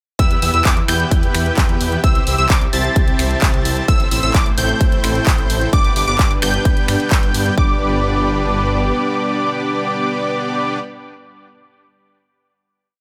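A punchy four-on-the-floor electronic kick and a programmed big-room kit of hi-hats, finger snaps and handclaps drive this anthemic, triumphant festival progressive house piece at 130 BPM in G major, with a menacing, saturated detuned saw bass pushing eighth notes until 8.9 s. Over the Em, C, Am, G drop, a huge compressed supersaw riff and a catchy plucky unison lead, bright and doubling the chords an octave higher, both ring with tape echo and sidechain pumping. A lush pad with chorus and phaser sits in the background, and after the drums stop at 7.7 s the synths sustain a final chord to 10.8 s under light digital reverb.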